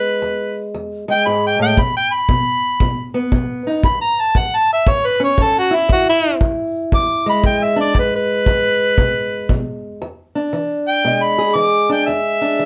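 Laid-back and swaggering, this short cut from a longer acoustic country blues piece swings easily in 4/4, with a harmonica soloing up front throughout, its warm tone carrying light vibrato and scooped notes in a jazz-inflected style. A dark, boxy fingerpicked steel-string guitar with a parlour character accompanies it from start to finish, while a distant, roomy, punchy kick drum played with brushes joins at 1.8 seconds and drops out at 9.6 seconds. The chords move from E through a chordless break to A, back to E, then G#m/B before settling on E7, all set in a small room with moderate reverb.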